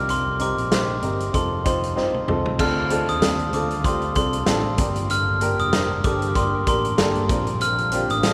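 Hopeful and warm, this short excerpt of piano-driven pop moves at 96 BPM in Bb major with a light sixteenth-note swing, led by a clear, woody upright piano and a bell-like glockenspiel struck with brass mallets that carries the melody up high. A punchy, bright fingered electric bass sits underneath, while a loose indie drum kit with dark cymbals and a gritty, saturated edge plays a fill from 2.0 to 2.6 seconds. A lush, detuned, chorused pad then enters very quietly at 2.6 seconds, and everything sits in the deep reverb of a church or concert hall.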